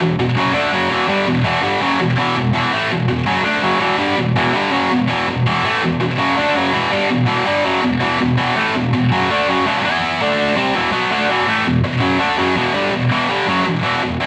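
Epic, dark metal at 164 BPM in E minor, cut from a longer piece, where a bright, distorted, double-tracked high-gain electric guitar plays picked and up front as the solo part from 0.0 to 14.3 seconds, ranging from E2 to E4, holding on Em before a brief shift to D5 at 10.2 seconds and a return to Em, all set in a moderate stone-room reverb with the feel of a band playing live together.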